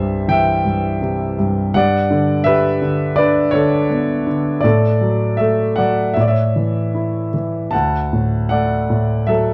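Classical solo piano in a calm, peaceful, lyrical vein, this brief excerpt from a longer piece features an intimate, up-front grand piano with audible action noise, played with rubato over chords moving from C through G, D/A and A to a close on D, all set in light reverb and a dark production.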